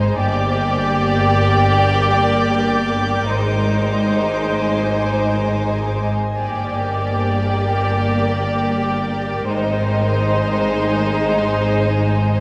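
In free time, this eerie, uneasy suspense cue in G phrygian drifts between G minor and A-flat chords. Clear, floating violins carry the melody over an up-front second violin line, while rich, close violas and an airy, detuned pad with ensemble chorus fill the middle, and dark, woody double basses join soft, intimate cellos underneath, the strings all bowed sul tasto. A distant high violin texture hovers from 0.2 to 6.0 s, and a wet scoring-stage reverb and vinyl crackle give this cut from a longer piece its haunted, aged sound.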